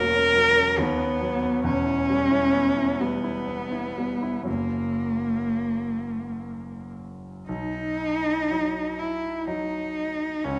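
A dark, close-miked cello sings a lyrical melody over a clear, intimate grand piano from the opening moment, in an unhurried romantic classical duo in B major, moving in a rubato 3/4 at roughly 58-70 BPM. The bowed cello sits up front with expressive vibrato and portamento, while the polished piano accompaniment, its action noise audible, reaches from deep bass up into the middle register. A wet recital hall reverb surrounds the pair as the harmony passes through E minor and F# before arriving on B at 7.5 s, where a new section begins and runs until the cut at 10.6 s.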